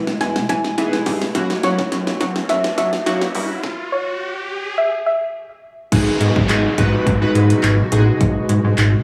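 A punchy, funky analog bass sits up front in this energetic, confident dance-pop excerpt at 105 BPM in G# minor, joined by an overdriven pop drum kit with a fat snare and metallic hats, glossy chorused retro synth keys with tremolo, a soft round pluck melody, a cloudy granular pad in the background and a riser and downlifter, as a build-up over Emaj7 and F#7 breaks into a stop at 3.6 seconds before the drop lands on G#m7 at 5.9 seconds.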